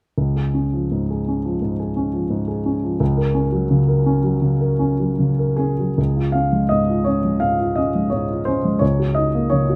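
Hopeful and gently warm, this short passage from a longer romantic character piece for solo piano sits in D-flat major at about 83 BPM in 4/4, with a rubato feel that lets the beats stretch unevenly. A clear baby grand piano, tuned to A4 = 442 Hz, plays alone from 0.2 to 9.8 seconds, covering the span from Db2 up to F5. Its tone is polished and present, placed up front in the mix. The harmony opens on Db, moves to Gb over Db at 3.0 seconds, and a new section returns to Db at 6.0 seconds before closing on Ebm7 over Db. A moderate stone room reverb, with a decay of about 1.0 second, surrounds the instrument with a sense of space.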